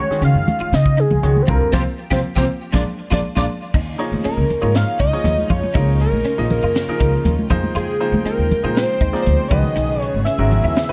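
A straight, driving 4/4 groove from a tight funk kit with a high-tuned snare and congas under soft hands propels this nocturnal electric jazz fusion excerpt, where a fat, detuned sawtooth lead with vibrato, a filter sweep and a moving notch carries the melody over a woody pizzicato upright bass, a clear but worn grand piano and compressed, chorus-and-tape-echo guitar stabs, while a band accent and drum fill lead into floating sul tasto chamber strings at 3.7 s, all in a dark, small-room production.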